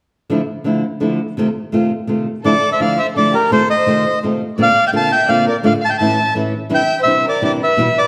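A large studio reverb with a 1.4-second tail gives this short cut from a longer tango a roomy, wet sheen, while the bandoneon and flamenco guitar sit up front. It is a sultry, dramatic piece in a rubato three-beat feel, opening at 0.3 seconds with the fingerpicked acoustic flamenco guitar alone, its fresh strings ringing out as accompaniment. At 2.5 seconds the bandoneon enters with the melody, close-miked, dry and full, its reedy voice the loudest part of the mix. A symphonic violin section joins at the same moment on a softer second line, bowed with vibrato, a soft attack and a smooth, lush top that sits well behind the bandoneon. The harmony moves through colored minor and seventh chords, with added-ninth voicings and a brief turn through a major chord before settling on an added-ninth close.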